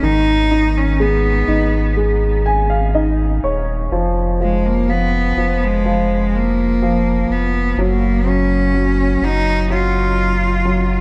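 This pop ballad, cut from a longer piece, moves at a slow 62 BPM in a straight 4/4 and carries a longing, heartbroken mood. A bright, biting bowed cello played by a single player sings the melody with light vibrato and an intense edge, sitting up front yet with a distant air, colored by tape echo. Beneath it, a warm, polished grand piano supplies present accompaniment through an analog chorus and adds a fill between 2.0 and 3.9 seconds. A deep, thick, saturated sub bass with a fast attack and sustained tone anchors the low end up front. The harmony moves from Abm to Fdim and settles on an open Gb major-seventh voicing that omits the third, all set in a light studio reverb.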